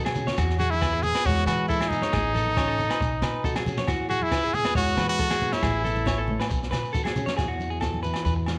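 A brilliant, forceful trumpet leads this joyful highlife guitar band excerpt at 137 BPM in E major, playing a jazz-style solo up front with light vibrato and scooped notes until it stops at 6.4 s. Beneath it, a twangy, slightly broken-up electric guitar picks arpeggios through a slapback echo, a fingerpicked steel-string acoustic guitar sits in the background, and a woody, thumpy pizzicato upright bass carries the Eadd9, Aadd9 and Badd9 changes. A brushed drum kit with a high-tuned snare and boomy kick opens with a short fill, while ringing agogo bells, very quiet hard-hand congas and a grainy, distant shekere complete the percussion in a light studio reverb.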